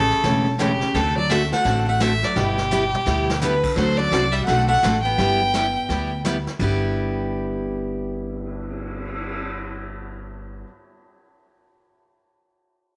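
A clear, focused fiddle carries the melody up front with a light vibrato in this cheerful, down-home stretch of western swing, cut from a longer piece and moving at a brisk 170 BPM with a swing feel in G major. Beside it, a dark, clean hollow-body archtop guitar plays a compressed second line in the background, and both parts drop out at 6.2 seconds. A full-bodied dreadnought acoustic guitar, picked and placed up front, supplies the accompaniment throughout, while a woody pizzicato upright bass anchors the low end. A distant, roomy brush kit with dark cymbals, a punchy kick and a rolled-off top keeps time and adds a drum fill at 2.7 seconds. The harmony moves through A7, D7 and G6, and a moderate echo-chamber reverb gives the whole a warm studio glow.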